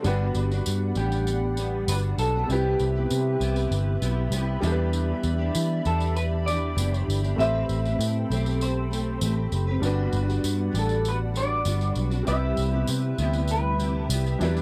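Indie and bedroom pop with a sunny, dreamy glow, set in a dry, close 1970s-style studio sound, this section opens on a round, foam-muted electric bass sitting up front beneath a full-bodied picked acoustic guitar with ensemble chorus and warbly pitch drift, a woody upright piano whose action noise and cassette tape colouring feel intimate, and a jingly tambourine. From 1.0 seconds a slightly broken-up electric guitar through a small old amp carries the melody with lush chorus and tape echo. A hollow, flute-like pad with a slow attack drifts in the background from 0.6 seconds, under a Gmaj7, Cmaj7, Em7 and Am9 progression.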